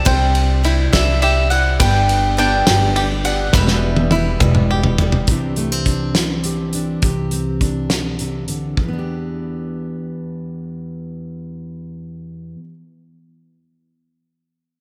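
A lilting 6/8 pulse at 69 dotted-quarter beats per minute, played straight, carries this yearning, stirring indie folk excerpt in E minor, its arrangement building as it moves from Cadd9 through G and Em and on to Em7. A round, double-strung mandolin sings the melody up high, while a bright, boxy swing-style acoustic guitar and a twangy, fingerpicked bluegrass banjo tucked in the background add accompaniment and percussive arpeggios, all three wrapped in slapback echo. Underneath, a woody pizzicato upright bass holds the low end for the whole passage, and a loose indie drum kit with dark cymbals, a fat snare and a tight kick sits up front, rolling into a fill at 3.5 seconds. The mandolin drops out just before 5.3 seconds, when the swing guitar and banjo give way to a full-bodied, fingerpicked dreadnought steel-string guitar that takes over the accompaniment with a warm, close presence. 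The drums stop at 8.9 seconds, leaving bass and fingerpicked guitar to carry on, while a moderate, lush hall reverb gives the whole recording a big arena sound.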